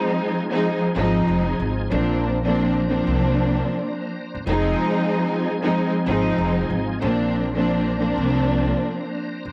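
Lush bowed strings with expressive vibrato sit up front beside a bright, reedy tonewheel organ holding sustained chords in the background with key click, chorus vibrato and a slow rotary speaker, both carrying a cassette tape colour, and a woody, thumpy pizzicato upright bass on gut strings joins them at 1.0 seconds in this dark, reflective hip hop fragment at 94 BPM, swung on the 16ths in F dorian, moving between Fm7 and Bbadd9 in a homemade cassette recording with light reverb.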